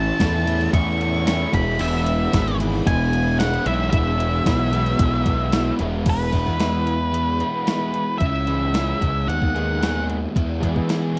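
A dark, fuzzed-out octave lead guitar carries the melody up front until 10.0 seconds, with distortion and slapback echo, over a punchy, bright fuzz bass that sits just as close. Behind them, a crunchy overdriven guitar and a mellower overdriven guitar with chorus and slapback echo play riffs, while a thumpy 80s drum machine with gated reverb on its snare drives from 0.2 seconds. A very quiet, swirling phased string machine holds sustained chords until 6.0 seconds in this wistful, jangly indie rock fragment, captured in a dry, close 1970s-style studio sound.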